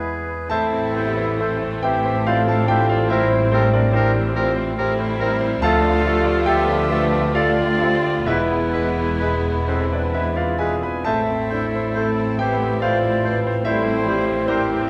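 In a rubato 3/4 pulse drifting between 57 and 73 BPM, this brooding, passionate excerpt from a romantic movement for piano and orchestra in A minor opens with the clear, up-front concert grand carrying the melody over deep bass and long sustain, with an airy silver flute, a close-miked clarinet and a smooth-topped oboe adding second lines. At 0.5 s the orchestra enters: a dark chamber violin section joins the melody with expressive vibrato, while a floating, very quiet studio violin section, rich violas, a mellow bassoon and a section of French horns holding sustained chords fill the middle, and woody cellos with intimate double basses anchor the bass, all played sul tasto by the strings. The harmony moves through Am, C7/A, Dm and E, bathed in a wet concert hall reverb.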